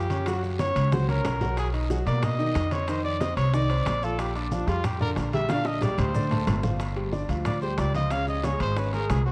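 A straight 4/4 Afro-Cuban jazz groove, lively and sunny, carries a clear trumpet soloing up front with light vibrato and tape echo over a warm concert grand piano, a woody, thumpy pizzicato upright bass on gut strings, very quiet round bongos, and a background bed of damped, low-tuned congas, ringing metal-shell timbales, raspy guiro and grainy maracas, with drum fills at 0.9 and 5.5 seconds, the dreamy mix soaked in lush hall reverb and cassette haze in this short cut from a longer piece.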